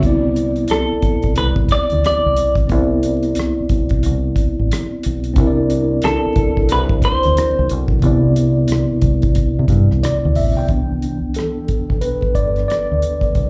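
Warm and smooth, this R&B and neo-soul piece moves at an unhurried 90 BPM in 4/4 with a swung sixteenth-note feel, opening on a Cmaj9 chord in C major. A mellow, clean tine electric piano carries the accompaniment throughout, heard through its built-in speakers, while a deep dub bass, fingered and amped with a round, punchy tone, anchors the low end. A cloth-damped drum kit of hi-hat, tight kick and rim click sits dry and dark, its thuddy sound rolled off at the top. From 0.7 to 7.7 seconds a dark, compressed semi-hollow guitar picks a clean melody, lush with chorus and slapback echo, before the electric piano takes a short solo at 10.7 seconds. It sounds like a live club performance caught through the venue's PA, with club reverb, vinyl crackle and a dull, band-limited top end framing this fragment cut from a longer piece.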